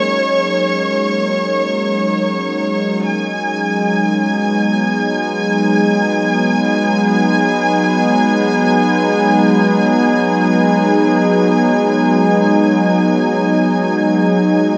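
Ambient excerpt in free time and G# minor, tuned to A4 = 435 Hz, with a reflective, spacious mood as D#m7 gives way to G#m7 at 3.1 seconds. A smooth, detuned sawtooth pad with chorus holds sustained chords up front and fades in across the full 14.8 seconds, while an evolving analog drone on G#3, shaped by pulse-width modulation and chorus, also fades in from the background. A close, bowed studio violin section adds a high, even texture with vibrato, all set in a wet spring reverb and the soft grain of cassette tape.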